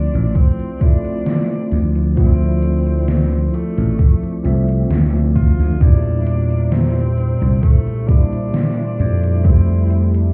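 Hazy and woozy, this vaporwave excerpt drifts over a straight 4/4 feel, moving from Dm9 to C7 and landing on Fmaj9 near 9.4 seconds. A growly, punchy slap bass and a thumpy, overdriven electronic kick sit up front, joined by a gated 80s drum machine whose hi-hat and gated-reverb snare carry overdrive, while a barky, gritty tine electric piano with ensemble chorus and 12-bit sampler grit supplies the accompaniment. A bright, forceful tenor saxophone with vibrato carries the melody through tape echo above a very quiet, warbling, detuned pad of sustained chords, and the whole mix sounds muffled through a wall, like cassette tape heard amid club ambience.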